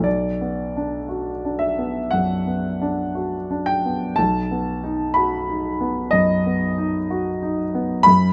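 Tender and nostalgic, this short cut from a longer piece is a romantic classical nocturne in B minor for solo piano. It moves at a slow 56-63 BPM in 4/4, with a rubato feel that lets the phrasing breathe freely. A grand piano with a smooth, vintage character sits up front and plays alone from start to finish, ranging from B1 up to B5. The harmony rests on B minor before shifting to B7 at 4.2 seconds, about midway through the cut. Light reverb gives the instrument a gentle sense of space.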